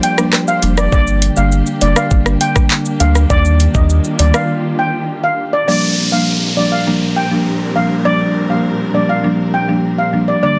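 Sunny and bouncy, this short dancehall excerpt at 101 BPM in Bb major pairs a shimmering, airy steel pan lead with digital delay over lush, vibrato-rich strings and a buzzing, woody marimba that both pump with sidechain, while knocking electronic drums with metallic hats, handclaps, rim click and shaker drive the groove with a round sine sub bass until the drums stop at 4.5 seconds, leading to a break and then a second section where an electronic downlifter enters at 5.7 seconds, all in a dry, dense, heavily limited modern mix.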